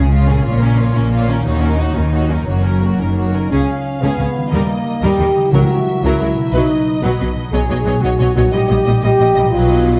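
A dark, warm scoring-stage sound with moderate reverb frames this adventurous, heroic cinematic excerpt in 6/8 at 119 BPM, where lush bowed violin sections carry a rich melody and a clear second line over a focused viola accompaniment, ringing bright harp arpeggios, and a smooth cello and double bass foundation, building through its opening before a mellow French horn section enters up front with sustained chords at 3.0 seconds and a round, soft-mallet timpani stroke sounds at 5.5 seconds, as the harmony moves from Bbm through Db and Cbadd9 to Eb/Bb.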